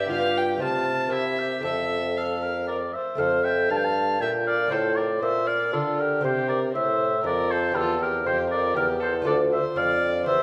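Classical baroque-style sonata movement with continuo in a dance-like, serene triple metre, where a distant, roomy oboe with light vibrato carries the melody over a reedy, gut-string violin second line, a delicate fingerpicked lute with doubled strings, and a mellow solo bassoon on the bass, all set in a recital hall's wet reverb and cut from a longer piece.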